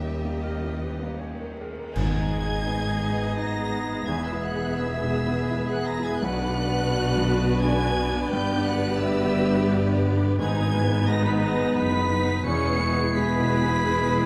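A cinematic, sorrowful film-score excerpt in G# minor at 86 BPM in a rubato 3/4, where a distant, lush violin section carries the high melody over a rich second violin line, background violas with portamento, a felt-muted upright piano with audible action noise, dark French horn chords, and a bass of dark cellos and smooth double basses, while a very quiet clarinet enters at 0.4 s, an airy, hollow flute joins at 1.9 s and a roomy oboe at 2.0 s, where bright clash cymbals, concert bass drum and hard-mallet timpani mark an accent, the timpani returning at 10.4 s, all set in a moderate scoring-stage reverb.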